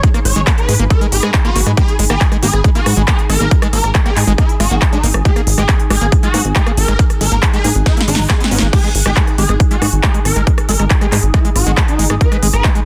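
Psychedelic trance at 138 BPM in G# minor, driving and alien, cut from a longer piece: an overdriven, punchy electronic kick sits up front with a layered big-room kit of crisp hats, punchy snare, handclaps, rim clicks and crash, while a plucky, wave-folded analog bass with tube saturation carries the low end. A squelchy, resonant acid riff screams through distortion, chorus, delay and sidechain pumping, and a swarming, detuned rave lead with phaser and a pitch-rise attack carries the melody over a dark, ethereal pad in the background. A drum fill arrives at 7.9 seconds alongside a very quiet electronic swell, all within a dense, heavily limited modern master with digital ambience.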